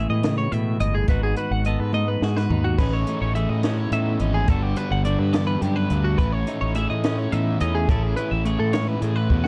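A bright, intricate math rock and midwest emo excerpt in 6/8 at 71 BPM opens with a compressed clean electric guitar in the background, twangy twelve-string electric guitar arpeggios and an up-front fuzz bass, with a compact cocktail drum kit joining at 0.2 s on hi-hat, toms, crash, a punchy kick and a high-tuned snare. After a drum fill, an overdriven, double-tracked semi-hollow guitar enters with a riff at 2.8 s as the chords move through Amaj9#11, G#m7, Amaj7#11 and Gmaj7 before settling on Amaj9. The production is dark and dry, with the acoustic kit captured in a small room.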